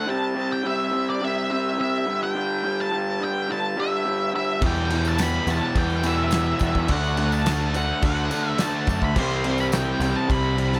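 A straight 4/4 pulse at 106 BPM drives this swaggering classic rock passage, cut from a longer piece and sitting in a small room with light reverb. From the first second an octave-fuzz lead guitar carries the melody between D5 and C6, its distorted tone given a slapback echo, while a raw garage guitar plays a dark, lo-fi overdriven riff up front, the pair moving over C5 and G5 power chords. At 4.6 seconds the band kicks in: a growling, bright electric bass with overdrive sits forward in the mix, a cloth-damped, thuddy acoustic kit with a warm, rolled-off top brings a fat snare, tight kick and dark crash cymbal, and a jingly tambourine rattles close and dry in the background. Two very quiet, sludgy distorted guitars join the riff at the same moment, one of them double-tracked, sitting beneath the front-line parts. The harmony then moves through Em, D and C, and the whole ensemble keeps driving until the cut at 10.8 seconds.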